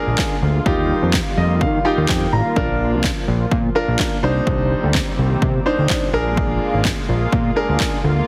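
A fat, saturated analog bass with a fast, plucky attack drives this summery, euphoric dance-pop excerpt in Bb major at 126 BPM, pumping from the sidechain alongside a punchy, overdriven house kit of kick, cracking snare and handclaps. A clear concert grand piano carries the accompaniment and plays a fill from 1.1 to 2.6 seconds, while a lush, airy unison pad with chorus holds sustained chords beneath. The chords move through Bb7, Ebadd9, Bb and Cmadd9, and the mix has light reverb and a heavily compressed radio sound.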